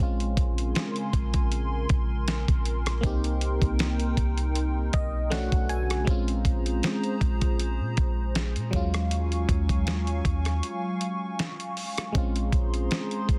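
This is a moody, longing contemporary R&B excerpt in Bb minor, moving at a relaxed 79 BPM in 4/4 with a light swing on the sixteenths. A glassy FM electric piano carries the accompaniment with bell-like, quickly decaying notes, colored by chorus and phaser. It steps forward with a fill at 4.6 seconds. A hollow, flute-like pad enters at 0.3 seconds and holds airy, mellow chords with a slow attack, long release and a touch of chorus. Underneath, a clean 808-style bass adds deep, boomy, dark sine tones. The gritty, compressed sampler-style drum kit sits up front, with a thumpy kick, fat snare, rim click and hi-hat. The harmony drifts from Bbm9 through Cm7, Bm9 and Ebm11 before returning to Bbm9, a break arrives at 10.6 seconds, and the dry, dense, heavily limited mix keeps the sound close.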